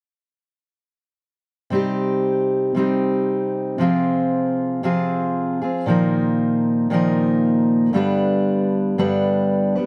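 Set in a small room with moderate reverb, this tender, wistful pop fragment in C minor at 116 BPM features a single full-bodied, up-front fingerpicked steel-string acoustic guitar, heard from 1.7 to 9.9 seconds, moving through Cm, Fm/C, Bbsus4 and G in a straight 4/4 feel.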